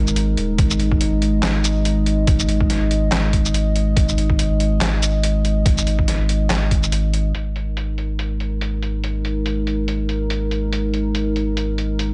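Deep dubstep at 142 BPM in half-time, dark and cavernous, opens on a moody, detuned analog pad with chorus and a slow attack holding a G#sus2 chord over a thick, saturated sub bass that sits up front. A pitched-down, gritty trip hop kit of handclaps, hi-hat, shaker and a medium-tuned snare, muffled by low-pass filtering and re-recorded in a small room, arrives at 0.1 seconds, and a compressed, thumpy electronic kick plays from 0.6 to 6.8 seconds. Swung sixteenths, light reverb and a dulled top end shape this excerpt from a longer piece.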